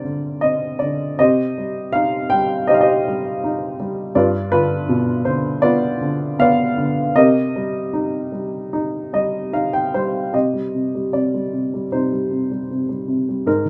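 In a flexible, rubato 4/4, this brief classical excerpt for solo piano unfolds in a dark, melancholic mood, cut from a longer piece and tuned slightly below standard pitch. A single upright piano, dark, mellow and woody with short sustain, sits up front in a moderate studio ambience, moving from a suspended opening through minor and dominant seventh harmonies. A fill at 8.7 seconds leads into a new section at 10.3 seconds that settles back onto the minor home chord.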